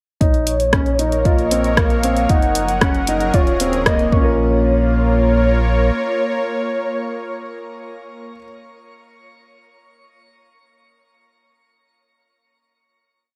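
Bathed in a moderate recital-hall reverb, this short, cinematic and intimate piano-and-strings electronica piece builds for its first 4.4 seconds over a four-on-the-floor electronic kick and a restrained deep house kit of closed hi-hat and rim click, with a round analog bass and a lush, detuned pad both pumping to the sidechain beneath a dark, mellow grand piano ostinato and a velvety synth lead tracing arched motif phrases with vibrato and portamento, before the drums fall away and the piano, pad and lead settle onto a final chord in shimmer reverb.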